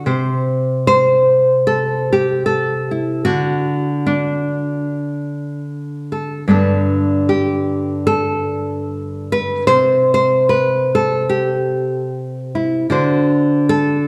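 A relaxed 75 BPM pulse in 4/4 carries a light swing on the eighth notes, giving this short folk excerpt an easy, unhurried lilt. A solo nylon-string guitar, fingerpicked in a classical manner, plays throughout the 14.1 seconds, ranging from G2 up to C5 in G major, with its tuning set at A4 = 437 Hz. The harmony moves through Am/C, D, Gadd9, C5 and D7, and that final dominant chord leaves the phrase hanging as if more were to follow. The guitar sits up front with a warm, acoustic tone, and small finger squeaks on the strings add a human touch. A recital hall reverb with a 1.4-second tail surrounds the instrument, and the dark, warm production lends the whole passage a gentle, nostalgic glow.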